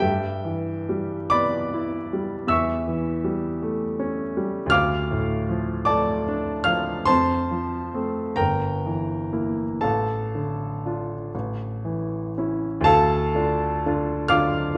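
Mournful and wistful, this short excerpt from a romantic classical nocturne in D minor drifts in a slow, rubato 6/8 at roughly 38-54 BPM, with the tuning set a touch low at A4 = 438 Hz. A solo baby grand piano, warm, natural and up front, ranges from deep bass to high treble, its harmony circling through chords such as A7/E, F and Edim/G before settling on D minor as a new passage opens at 12.9 s. A moderate recital hall reverb and a dark, warm production give the sound a soft, shadowed glow.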